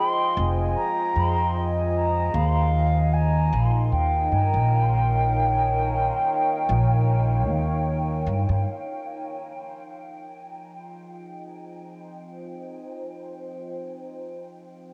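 A hazy home cassette recording with a moderate spring reverb gives this short ambient dub excerpt a spacious, softly worn character. A deep, dark ambient pad holds sustained chords throughout, its detuned sawtooth layers, sub octave and chorus blooming slowly from a gentle attack into a long release. A mellow wooden flute carries the melody in the first half, pure and vibrato-tinged, with dub echo and tape colour trailing its soft-edged notes until it stops at 7.9 seconds. Up front, a woody pizzicato upright bass on steel strings anchors the low end with a relaxed, swung feel, moving from Fm7 to Eb7 before falling silent at 8.6 seconds. From 8.7 seconds the pad plays alone, returning to Fm7 under a filter sweep that lets the moody haze hang in the air.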